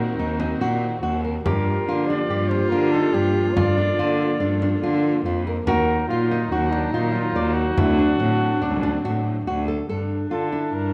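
Hypnotic and restless, this short excerpt of contemporary chamber music moves at 142 BPM in an uneven 5/4 metre with a straight feel, centred on G minor. A warm, vintage-toned flugelhorn carries the melody with scooped, jazz-style notes, while a bright clarinet with light vibrato shapes a second line. A fingerpicked nylon-string guitar supplies deep, classical arpeggios, and a bowed solo cello sits up front as the bass, its focused tone coloured by vibrato. In the background, a lush, smooth studio string section holds sustained chords until 9.9 seconds, and a close, dry frame drum struck with hard hands adds percussion from 0.2 to 9.8 seconds. The harmony moves from Ebm through Gm7 and D7 before settling on Gsus2 in the closing second, all placed in a moderate recital hall reverb within a dark production.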